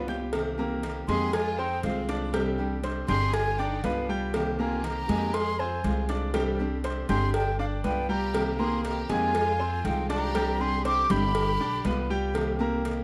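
A brief drum fill opens this danceable, nostalgic passage of Cuban son and guajira, cut from a longer piece, before the band settles into a straight 4/4 groove at 120 BPM in C minor. Fingerpicked steel-string acoustic guitar, full-bodied with audible finger squeak, and a clear, natural grand piano playing arpeggios sound from the very start, over a woody, thumpy pizzicato upright bass that sits up front. Round, low-tuned bongos and cowbell, struck with soft hands, enter at 0.1 seconds and sound distant, as if in a large room. At 1.1 seconds a mellow silver concert flute takes the melody with airy, expressive vibrato and a soft attack, joined by a focused, bowed violin section carrying a second line in the background with a slapback echo. The harmony cycles through Cm7, Fm7, Csus2 and G7, all under light reverb.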